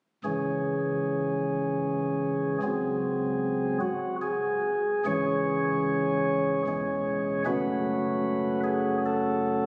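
Classical chorale-style music in 3/4 with a dark, solemn mood, this short cut from a longer piece features a solo chamber organ on soft flute stops with a chiff, placed up front and spanning a deep low register to a mid-high top, moving from C# minor through a G#7 over a C# pedal into a second section at 5.1 s that passes to F# minor, all heard through a phone recording in the room awash in a long, wet cathedral reverb.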